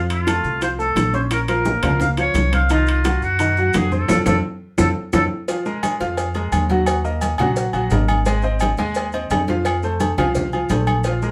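A clear, intimate grand piano with audible action noise and a dark, thumpy gut-string upright bass open this fiery, passionate salsa fragment in Bb minor at 172 BPM, joined at once by a distant, lightly vibrato oboe carrying a classical-style solo melody until 5.2 seconds, while ringing congas, metal-shell timbales with agogo bells, round low-tuned bongos and cowbell set in the background, very quiet woody claves and grainy vintage maracas fill out the live-room band, which hits a band accent from 4.1 seconds and a drum fill from 4.4 seconds within a short, wet studio reverb.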